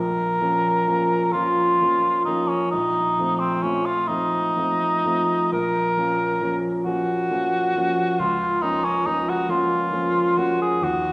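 Romantic classical duo in a slow, elegiac 6/8 with flexible rubato, where a mellow cor anglais sings a melancholic solo line with light vibrato over a clear, open baby grand piano accompaniment with long sustain, both up front yet heard from further back in a wet recital hall, in this short passage cut from a longer piece.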